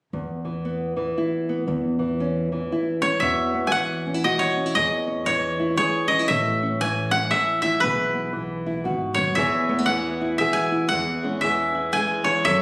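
A small, fingerpicked nylon-string guitar and a thumpy, pizzicato upright bass open this peaceful folk fragment in E major at 0.1 s, swinging gently in 3/4 at 117 BPM, before a dry, woody koto played with fingerpicks takes the melody up front at 3.0 s and a dark, picked steel-string acoustic guitar adds arpeggios with audible finger squeak from 9.4 s, all captured on a phone in a room with moderate studio reverb.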